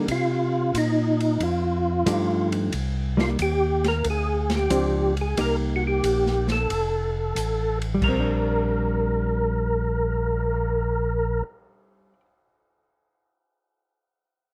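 Soul jazz organ trio in Bb major at 91 BPM, swinging and greasy, with a fat, lightly overdriven tonewheel organ bass line showing key click through a stopped rotary speaker, while a mellow, round percussive organ carries the melody up front with third-harmonic percussion, chorus vibrato and a slow rotary speaker. A dark, clean, compressed hollow-body guitar fingers the accompaniment, and an acoustic drum kit in a small room sits lower in the mix with dark cymbals, a medium-tuned snare and a boomy kick. Light reverb surrounds the excerpt, the harmony cycles through Cm7 and F9 before settling on Bb69 at 8.0 seconds, and the guitar rings on alone until 12.3 seconds.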